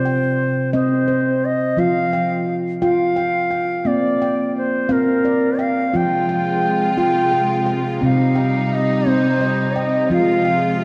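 Gentle and hypnotic, this short excerpt of meditative world music moves at a slow 58 beats per minute in a lilting 6/8, centred on F minor. A ringing stainless-steel handpan, played with the fingertips and heard up front, spins arpeggios from the outset, while a pure, bamboo-toned bansuri with a straight, tongued tone carries the melody alongside it; both sit in a diffuse ambient delay. At 6.0 seconds a clear studio string section enters with bowed, sustained chords, its light vibrato giving a biting yet smooth-topped intensity. The harmony drifts through C minor, F, B-flat, F minor and C minor, settling on F minor at 10.1 seconds. A wet concert-hall reverb with a 2.5-second decay wraps the dark, warm production in a spacious glow.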